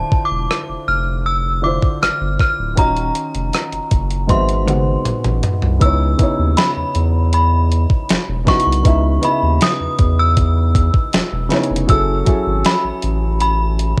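A ringing FM synth chime, a dark, worn grand piano and a deep, saturated sine sub bass open this short contemporary R&B excerpt together, with a crisp 8-bit drum machine joining a moment later in a sensual, longing mood at an unhurried, straight pace. The chime carries the melody high above, its inharmonic, warbling tone thickened by ensemble chorus and colored by cassette tape, each note striking quickly and decaying into a long release. Beneath it, the mellow piano supplies intimate accompaniment with audible action noise, also colored by tape, while the thick, sustained sub bass sits up front with a fast attack. The sampler-style drums, re-recorded in a small room and placed up front, bring a thumpy kick, fat snare, hi-hat, rim click and toms, and a fill from 4.3 to 5.8 seconds leads into the second section. The harmony moves through minor-seventh and altered chords before settling on C#m9 and later shifting to F#m9, all captured as a dry home recording on cassette.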